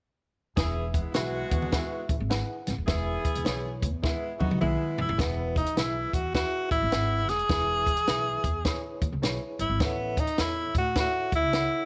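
A breathy, up-front tenor saxophone with scooped notes and vibrato takes the melody at 5.0 s in this uplifting, swinging 1960s-style soul piece, after a tight, clear saxophone section and soft-handed, damped congas carry the opening until 5.1 s, while a barky, lightly overdriven electric piano with fast tremolo, a woody pizzicato upright bass and a dry, compact cocktail drum kit with a punchy kick and high-tuned snare keep going throughout, a drum fill marks the turn at 4.0 s, and light reverb gives a small sense of room.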